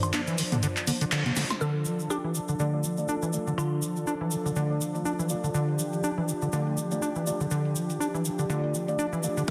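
Swung 16ths at 122 BPM drive this trippy acid house fragment in D minor, where a punchy analog drum machine with congas, handclaps, toms, woodblock and low-passed hats sits up front beside a squelchy, resonant square-wave acid bass riff, tube-saturated and pumping, whose filter sweeps across the first 1.6 seconds as a drum fill arrives at 1.4 seconds. Beneath them a smooth, warbling analog pad holds sustained chords with subtle chorus, while a grainy tube shaker adds texture. A crystalline wavetable pluck with tape echo plays a short melody from 1.6 seconds, and from 2.6 seconds deep, mellow chord stabs move through phaser and dub echo, all set in a moderate plate reverb under a dense, heavily limited master.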